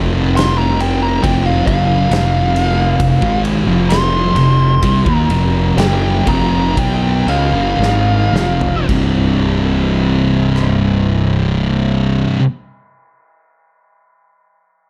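Stoner and doom metal in C minor at 54-69 BPM, hypnotic and brooding and cut from a longer piece, where two thick fuzz guitars carry the riff, one up front and one dark in the background, over a growly, overdriven fingered bass with tube saturation and an oversized low-tuned acoustic drum kit with a boomy kick, dark cymbals and a gritty, pumping room sound, while a compressed fuzz lead guitar with wah and tape echo solos from 0.4 s to 8.9 s as the music slows down into a drum fill, set in a dark production with light reverb.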